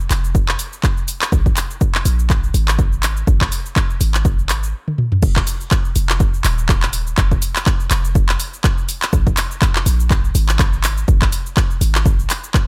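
An afro house groove at 123 BPM in 4/4 rides a 16th-note swing of 56%, carrying an earthy, warm mood through this short cut from a longer piece. A house drum kit of handclaps, hi-hat, shaker, toms and crash cymbal runs the full length, its hats tape-warm and placed up front. An electronic kick drum joins at 0.3 seconds, punchy and layered. A deep, boomy 808-style bass with a sine core, a noise layer and a fast, decaying attack moves between Eb1 and Bb1, pumping under sidechain compression. A drum fill at 4.9 seconds leads into a drop at 5.2 seconds that carries through to the end, all set in a digital ambience.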